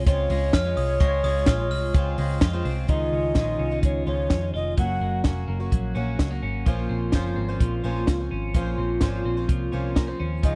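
A dry, close 1970s-style studio sound frames this bright, youthful fragment of jangly indie pop, where a pure, tongued clay ocarina with tape echo carries the melody until 5.2 seconds over a boxy, shimmering fingerpicked twelve-string acoustic guitar, twangy, compressed twelve-string electric arpeggios also touched by tape echo, a round, foam-muted vintage bass and a compact cocktail kit up front with a punchy kick, high-tuned snare and dark cymbals, while crisp group handclaps in the background and a ringing, bell-like glockenspiel join briefly from 0.5 seconds.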